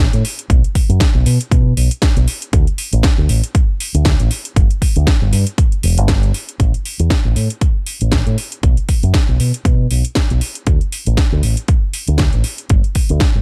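A dry, gritty hardware recording with little reverb opens this short cut from a longer nu-disco piece, sleek and cosmic at 118 BPM with a light swing on the sixteenths. A fingered electric bass with an envelope filter and tube saturation sits up front from the first second, direct and amped, ranging from E1 to B2, while a punchy, tape-touched electronic kick joins at 0.5 seconds. A house kit adds a cracking snare and metallic hats, both re-recorded in a small room, carrying the groove through a drop into the second section at 6.6 seconds.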